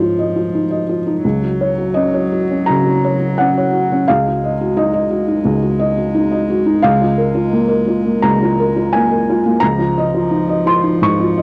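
Intimate and tender, this neoclassical fragment for piano and strings drifts in a rubato 4/4 at 86 BPM in Db major, where a felt-muted upright piano, dark and mellow with a thick-felt, short-sustained tone set up front, carries the accompaniment through chords moving from Dbadd9 to Bbm7/Db and back, while a single bowed cello played sul tasto adds a pure, floating second line that sits quieter in the mix across the full 11.4 seconds, all captured in a moderate booth ambience on a home cassette recording.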